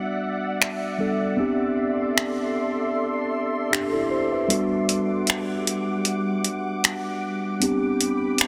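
A gated 80s digital drum machine sits up front from 0.6 s, its finger snaps and hi-hat carrying an overdriven, sampler-style grit, with soft clipping on the snare and the sound of a small room around it. This short contemporary R&B excerpt moves at a slow 77 BPM in 4/4, with a gentle swing on the sixteenths and a late-night, sensual mood. A mellow tine electric piano plays the accompaniment from the first moment, clean and direct, ranging from G3 to E5. Alongside it, a glassy FM pad holds sustained chords with a slow attack and long release, its ethereal sine tone thickened by ensemble chorus and its own reverb. The harmony drifts from Em9 to Am11 at 1.4 s, then to Gmaj7 and finally Gadd11/B, all under light reverb and a dense, heavily limited modern master.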